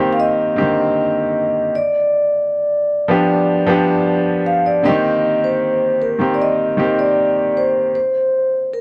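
A straight 4/4 pulse at 77 BPM carries this short, bittersweet and silky soul passage in C minor, cut from a longer piece, where a soft-mallet vibraphone sings a mellow, ringing melody with a slow motor vibrato over a brilliant, up-front grand piano accompaniment. The harmony moves from Cm7 to G7 and back to Cm7, and both parts sit in a moderate plate reverb. The piano drops out at 8.0 s, leaving the metallic vibraphone tone to sound alone until 8.8 s.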